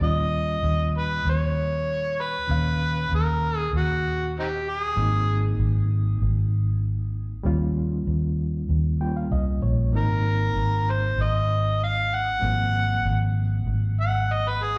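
Heard through a live club PA with a touch of room reverb, this rollicking, soulful straight-eighth soul blues excerpt in Ab mixolydian moves at 97 BPM over Eb7 and Ab7 changes, with a round, punchy, foam-muted electric bass up front beneath a reedy, bright electric piano that shimmers with fast tremolo and slapback echo and adds a fill at 8.7 seconds, while a gritty, overdriven harmonica with light vibrato, scooped notes and tongue slaps carries the melody, drops out after 5.6 seconds and returns at 10.0 seconds for a jazz-style solo.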